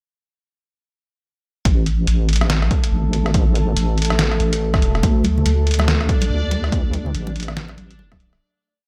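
Set in a digital ambience, this short, complete deep dubstep piece moves at 142 BPM in 4/4 with a half-time feel and swung sixteenths, its mood meditative and brooding, tuned slightly sharp at A4 = 441 Hz. The drop lands at 1.7 seconds, where an overdriven, punchy electronic kick sits up front beside a compressed, pitched-down trip hop sampler kit of closed hi-hat, rim click and muffled snare, both treated with studio reverb. With them comes a soft, up-front wobble bass with chorus, deep and saturated, shaping modulated phrases whose wobble speed keeps changing. A dark, wave-folded ambient pad with ring modulation and chorus drones on sustained chords over a harmony that shifts from A5 to D5. Bright, thin-skinned congas echo in the background from 5.0 seconds, and at 6.1 seconds a reversed, dreamy granular texture rises to hold a high note as the piece fades out.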